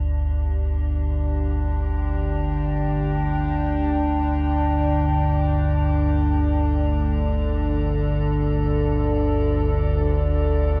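This dark ambient drone excerpt unfolds in free time, vast and ominous, its dreamy mix soaked in a huge reverb with a long tail. Anchoring it from the first moment is a nasal, evolving analog drone sitting low between G1 and D2, up front and mellow, its sawtooth and pulse-wave tones shaped by pulse-width modulation, a moving notch and subtle chorus. Alongside it, a metallic, inharmonic drone hovers on D4 as an eerie FM texture, wave-folded and washed in chorus, built-in reverb and shimmer reverb. At 0.5 seconds a deep, moody analog pad fades in with sustained chords between D4 and G5, its detuned square and sawtooth layers, sub octave and ring modulation wrapped in chorus and shimmer reverb. The harmony rests on G5 before shifting to D5 at 5.3 seconds, all parts sustaining with slow attacks and long releases through to the 10.8-second cut.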